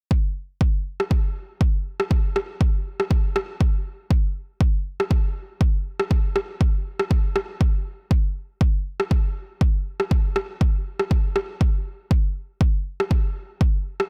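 A deep, overdriven electronic kick drum leads this afro house excerpt, sitting up front from 0.1 seconds to 13.7 seconds. An electronic rim click joins at 1.0 seconds, also overdriven and layered, playing a step behind the kick in level and carrying on alone until 14.1 seconds. The groove sits in 4/4 with a gentle swing on the sixteenths, giving the drums an earthy, relaxed sway. Both parts have a produced, gritty edge, and the dry room, with little reverb, keeps them close and tactile. The mood is warm and grounded, built entirely from these two percussive layers across a single section cut from a longer piece.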